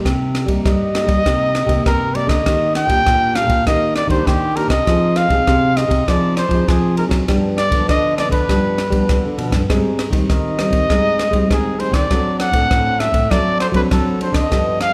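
A moderate recital-hall reverb opens up this bittersweet, nostalgic samba and choro fragment, recorded in a church or concert hall and cut from a longer piece. Two thumb-plucked, classical nylon-string guitars carry the accompaniment and the bass line from the start, while a compact cocktail drum kit sits dark, smooth and up front with a tight kick, ride cymbal and rim click. At 0.7 seconds a breathy trumpet takes the melody, intimate and whispered in jazz style with a soft attack and vibrato, over chords that move from Cm7 through Ebmaj7, Fm7 and G7 to Abmaj7 and D7.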